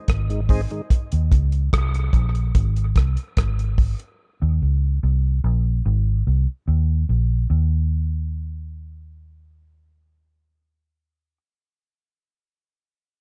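A straight, unhurried dub reggae groove opens this hypnotic, meditative fragment of a longer piece: a damped 70s drum kit sets hi-hat, a tight kick and rim clicks up front, then drops out at 4.2 seconds. A vintage muted fingered electric bass, round and foam-muted, carries on alone through the remainder, moving between Ab and Eb5 chords and chordless stretches. Near the start, a clean tonewheel organ with key click and slow rotary speaker makes a brief, soft appearance, all set in a dark small-room ambience.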